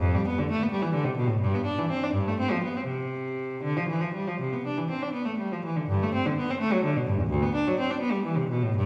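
Swaying in 12/8 at 82 beats per minute counted in dotted quarters, this flowing, radiant baroque-style suite movement in C major moves with uneven beats and a free rubato. A single unaccompanied cello carries it alone from 0.0 to 8.9 seconds, bowed up front in period style between D2 and D4, with a gut-string tone that sounds rich and slightly reedy under light vibrato, and its opening phrase returns at 5.9 seconds. The playing sits in a lush, reverberant church or concert hall acoustic, and the clip is cut from a longer piece.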